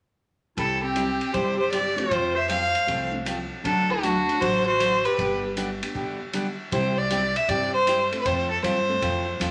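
Western swing country in C major at a brisk, swung 156 BPM, with a down-home, playful mood, this excerpt features a clear, up-front fiddle carrying the melody with light vibrato while a distant, roomy jazz-style clarinet with scooped notes adds a second line until 5.4 seconds. A bright, full-bodied picked steel-string acoustic guitar, a woody, growly pizzicato upright bass and a vintage drum kit with a tight kick and rolled-off top drive the accompaniment. A dark, worn, slightly detuned upright piano with audible action noise sits in the background from 2.0 seconds, and after a brief break at 6.0 seconds the tune moves into a new section, all in a club-like reverb.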